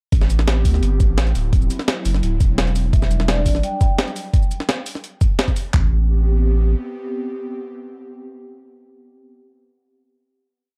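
A rolling two-step breakbeat at 171 BPM drives this short, lush and soulful liquid drum and bass piece in A dorian, opening straight into a drop at 0.1 seconds. Two sampler-style kits, compressed, pitched up and tape-toned, carry the groove: a gritty, up-front layer of thumpy kick, floor tom and handclaps, and a quieter layer of shaker, closed and half-open hi-hats and a medium-tuned snare. Underneath, a deep, thick, saturated sub bass holds long gliding notes. An airy, breathy pad with a detuned, chorused shimmer sustains soft, mellow chords through Am7, D7 and Em9. At 2.9 seconds a ringing, metallic vibraphone with medium mallets and fast motor vibrato adds brief call phrases through a digital delay. After the beat falls away, the bass returns at 5.7 seconds beneath a final Am7 chord as the pad rings on, all set in a dark digital ambience.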